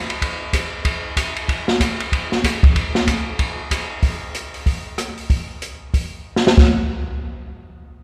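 An open acoustic jazz drum kit starts the recording at 0.1 s, setting up a swinging, smoky groove with a lilting swung eighth-note feel in 4/4. The kit sounds dark and smooth, with shadowy crash, ride and hi-hat cymbals, rim clicks, a medium-tuned snare and a boomy kick, all placed up front in the mix. A moderate church reverb surrounds the kit with a long, resonant tail that gives it a hall-like sense of space. After the opening passage the music moves into a new section at 4.0 s, and a drum fill from 6.2 s carries the kit to its final hits around 6.7 s. This short excerpt from a longer piece ends as another section begins.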